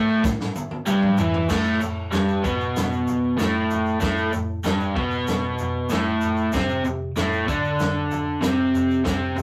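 A straight 4/4 pulse drives this swaggering, menacing garage rock clip, cut from a longer piece. A crunchy overdriven electric guitar opens alone at 0.0 seconds, picking a double-tracked riff that sits up front with a bright edge as it moves from A5 to Gadd9 at 1.5 seconds and on to C5 at 6.5 seconds. At 0.2 seconds a vintage acoustic drum kit enters with a fill that runs until 1.5 seconds, then carries on with a tight kick, a medium-tuned snare and dark cymbals, its sound mid-forward with a rolled-off top. An egg shaker joins at the same moment, grainy and band-limited, tucked in the background. The whole performance has the rough feel of a rehearsal-room take, with warm saturation and a moderate small-room reverb.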